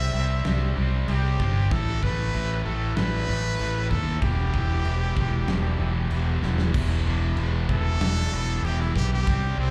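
A straight 4/4 groove at 95 BPM drives this heavy, aggressive hard rock cut in E minor, with a big, dark acoustic kit entering at 0.4 s with a fat snare, punchy kick and crash cymbal, under a growly, up-front fingered electric bass and a double-tracked, picked guitar riff that sounds bright and distorted, with a slapback echo. A brilliant, pop-style trumpet carries the melody with vibrato and scooped notes over the chords C, A5 and E5, and after a drum fill at 6.4 s it breaks into a solo from 6.7 s. The sound is that of a live club gig heard through the venue's PA, with club reverb, cut from a longer piece.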